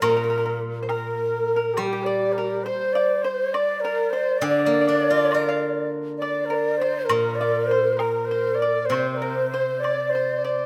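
Loosely measured in four, the phrasing stretches and breathes in a free rubato, giving this short Chinese traditional chamber passage a wistful, tender character. A reedy, straight-toned xiao carries the melody from a distance, its tongued notes set back in the mix. A breathy, hollow shakuhachi, intimately miked with soft attacks and vibrato, adds a second line. A mellow large dizi adds its buzzing membrane, chiff and rolled-off highs, and a percussive pipa plucked with fingerpicks quietly fills out the upper voices behind them. Beneath, a steel-string zither gives a ringing, silvery accompaniment, while a close, dry woodblock marks time in the background until about 10.1 seconds, all set in a moderate recital hall reverb with detailed microphone pickup.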